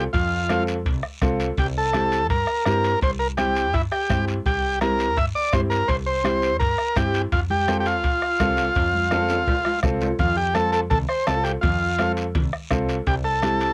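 Cumbia in F major at 167 BPM in a straight 4/4, this short excerpt from a longer piece has a festive, joyful mood. A buzzy vintage combo organ carries the melody up front, clean with a light vibrato and a cassette tape coloring, over a woody upright piano playing accompaniment. A dark, round fretless electric bass anchors the low end, while a bombo struck with a soft beater sits close in the mix. Raspy guiro, high-tuned congas with a thin, bright skin, and ringing metal-shell timbales with a band-limited, vintage tone sit in the background. The harmony moves from F to C7 at 1.6 seconds, back to F at 7.3 seconds, and a drum fill around 9.1 seconds leads into a repeat of the opening section. The whole has the feel of a home cassette recording in a booth with a short, moderate ambience.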